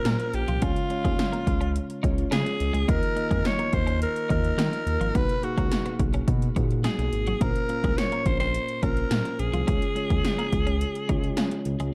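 1980s-style pop in 4/4 at 106 BPM, this short, dramatic and urgent cut from a longer piece moves through Bbmadd9, Db, Ebsus2 and Bmaj7, with a breathy, raspy alto saxophone carrying the melody up front, its scooped notes and vibrato trailed by digital delay. Punchy electronic pad drums with a gated snare and metallic hats drive alongside a smooth sawtooth synth bass, while a mellow, clean tine electric piano supplies accompaniment. A compressed twelve-string electric guitar picks a riff in the background through subtle chorus, all set in a dark production with light reverb and digital ambience.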